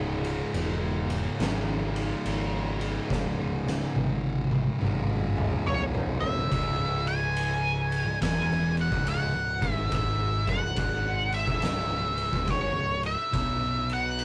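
A slow 70 BPM groove in 4/4 with a 65% swing on the eighths drags this stoner and doom metal piece forward, heavy and sludgy in C# minor, cut from a longer performance. An oversized, low-tuned acoustic drum kit enters at 0.2 seconds, up front with a punchy kick, fat snare, ride cymbal and toms, its gritty, saturated tone carrying a bright stone-room character, and it plays a fill from 3.1 seconds. Beneath it, a compressed fuzz guitar and a much quieter, thicker fuzz guitar grind out the riff in the low register, joined by a growling picked electric bass that is overdriven and heard both direct and amped. At 5.7 seconds an octave-fuzz lead guitar comes in up front with a dark, distorted wah tone, carrying the melody high above the riff. The harmony sits on C# power chords before moving to C# minor at 6.5 seconds and touching B, all captured in a rough rehearsal-room recording with warm saturation and a moderate booth ambience.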